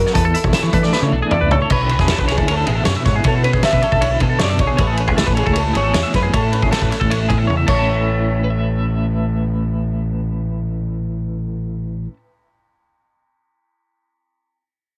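A moderate small-room sound frames this luminous, intricate math rock and midwest emo excerpt at 156 BPM in A major, where a slightly broken-up, lo-fi guitar through a small old amp carries the melody with slapback echo and plate reverb, a twangy twelve-string with tremolo plays the accompaniment, a second clean, compressed twelve-string adds arpeggios in plate reverb, a growling overdriven fingered bass sits up front, and a loose indie drum kit with a fat snare, punchy kick and dark cymbals plays until 7.8 seconds, with fills at 0.9 and 7.5 seconds, as the chords move from E7sus4 through Bm11 and Amaj9 to Aadd9.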